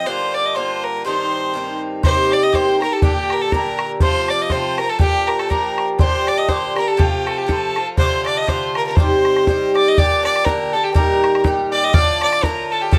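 A swung 2/4 Celtic polka, driving and spirited, with a biting, airy-bowed fiddle carrying the melody up front while a chiffy, distant tin whistle adds a second line above, a picked, double-strung bouzouki gives metallic accompaniment, and a boomy, close bodhran enters at 2.0 seconds, all in a moderate studio reverb, in this short cut from a longer piece.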